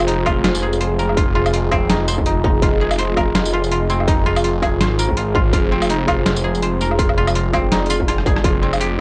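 A dusky cassette haze with light digital ambience frames this cinematic, dark fragment of half-time drum and bass at 165 BPM in F dorian, resting on an F minor chord and tuned slightly sharp. A deep, moody pad holds sustained sawtooth chords with a sub octave, chorus and its own reverb, breathing with sidechain pumping beneath a dry, woody koto whose fingerpicked arpeggios carry 12-bit sampler grit and tape echo. Up front, a swirling, thick detuned saw bass sits low on its phaser, while a gritty, pitched-down sampler-style kit of hi-hat, rim click, medium-tuned snare, tambourine and woodblock swings loosely, with a drum fill near 8.1 seconds. A distorted electronic kick, re-recorded in a small room, punches in from 0.3 seconds. In the final moments, around 8.8 seconds, a reversed, dreamy granular texture surfaces, barely audible, as the piece is cut.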